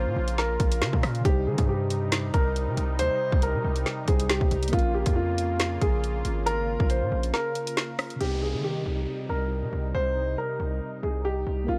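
A dry, close-sounding fragment of tense, menacing half-time drill, led by a dark, intimate grand piano melody whose action noise is audible through its filtered, delayed tone. A mellow tine electric piano sits in the background, a detuned sawtooth analog pad with chorus and tremolo holds the chords, and a punchy, heavy 808-style bass hits hard up front. The electronic drill kit, with a hard-clipped kick, woody snare and rim clicks, runs from 0.3 to 8.3 seconds, and an electronic downlifter sweeps in at 8.2 seconds as the passage turns.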